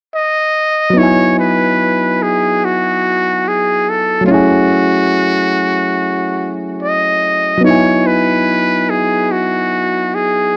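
Worn, warbling old-tape sound in a small room frames this melancholic, hazy hip hop excerpt at 72 BPM with a swung feel, where a close-miked trumpet with a metal mute carries a buzzy, breathy, whispered jazz-style melody with light vibrato from 0.1 seconds, joined at 0.9 seconds by soft, round electric-piano-like synth keys with chorus and plate reverb moving from Emaj7 to F#m7 and back.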